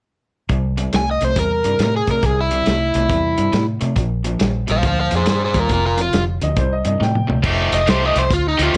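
A swaggering, laid-back electric blues shuffle at 138 BPM opens at 0.5 seconds with a picked, hollow-bodied overdriven guitar riff, a round, foam-muted fingered bass and a muffled, lo-fi soul drum kit with dark cymbals and a tight kick, before a bright, up-front overdriven lead guitar with slapback echo enters at 1.0 seconds, a woody upright piano line slips in briefly at 6.4 seconds, and a drum fill hands off to the lead guitar's solo over an F9 chord at 7.4 seconds in this excerpt cut from a longer piece.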